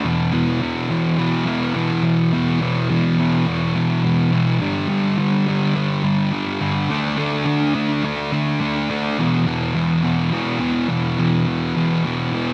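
A double-tracked fuzz guitar opens this melancholic, cinematic rock passage on its own, sitting up front and playing from the first second to 12.5 seconds. Its electric tone is warm and distorted, with picked notes ranging from E2 up to D4, and a slapback echo trails each attack. In E minor at 105 BPM with a straight 4/4 feel, the part moves through power chords E5, G5 at 4.6 seconds, D5 at 6.9 seconds, then back to E5. A lush hall reverb lends the guitar a big arena sound and a long, spacious tail. The whole passage is cut from a longer piece and plays as one unbroken stretch.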